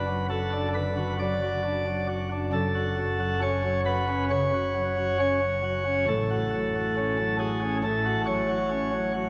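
A chamber organ's principal chorus opens alone, full and up front, with a distinct chiff, playing a solemn, dark chorale-style passage in F# minor. At about 68 BPM in 4/4 with a rubato feel, the harmony moves from Bm/F# to F#m at 2.5 seconds and F#m/A at 6.1 seconds, the voicing spanning deep bass notes to the upper register. A wet church reverb of 3.3 seconds surrounds this brief classical fragment, cut from a longer piece and lasting just over nine seconds.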